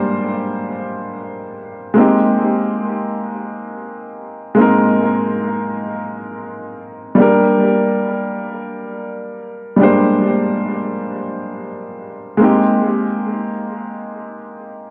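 A solo grand piano opens this dark, reflective hip hop fragment, cut from a longer piece, playing in free time between G3 and C5, its smooth, vintage tone with short sustain sitting up front. The piano is shaped by high-pass and low-pass filtering and a diffuse ambient delay, while a wet plate reverb soaks the whole dreamy mix. The harmony moves from Gm to Abmaj9 at 2.0 seconds, returns to Gm at 7.2 seconds and settles back on Abmaj9 at 12.4 seconds, all tuned to A4 = 442 Hz.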